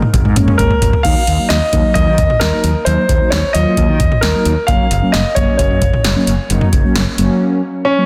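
A drum fill from a punchy, metallic-hatted analog drum machine opens this wistful yet upbeat synth-pop excerpt at 132 BPM, alongside a polished, up-front grand piano melody trailed by tape echo; a fretless electric bass follows at 0.1 s and a dark, detuned synth brass accompaniment with chorus at 0.4 s, as the chords move from Absus2 through Ebm to Gb beneath a lush hall reverb and a dense, heavily limited modern master.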